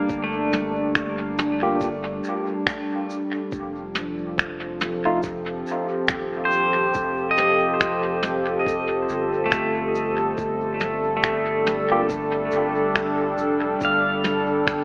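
This meditative, deep ambient dub excerpt opens on a warbling, nostalgic tape-like pad holding sustained chords up front, its detuned sawtooth tone softened by chorus and built-in reverb. Beside it, a bright, twangy pedal steel guitar plays fingerpicked arpeggios with slide and volume swells, trailing tape echo. A round, soft sub bass sits deep underneath. At a slow 70 BPM with a gentle swing on the sixteenths, a vintage brush kit with finger snaps, shaker and toms plays up front in a small-room, rolled-off sound with dub echo. Behind it sits a muffled, thumpy, pitched-down electronic kick. From 1.6 seconds a worn, slightly out-of-tune tine electric piano adds lightly overdriven stabs through dub echo, returning briefly near 11.9 seconds, as the harmony moves from Gm7 to F7 and on to a G7 chord. The whole mix is echo-heavy, with a moderate plate reverb and an AM radio character.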